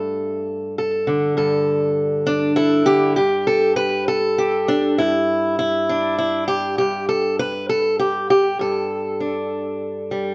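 A 6/8 pulse at 66 beats per minute, counted in dotted quarters with a straight feel, carries this gentle folk passage in G major, a brief cut from a longer piece. A single fingerpicked acoustic archtop guitar plays solo from start to finish, sitting up front with a dark tone and the occasional finger squeak. A slapback echo trails its notes, and a moderate studio reverb gives the sound a sense of room. It opens on a Gsus2 chord, moves into a passage with unharmonized lines at 3.2 seconds, and comes back to Gsus2 at 6.8 seconds. The guitar's range stretches from G2 to B4, and the mood stays warm and gentle through to the end at 10.3 seconds.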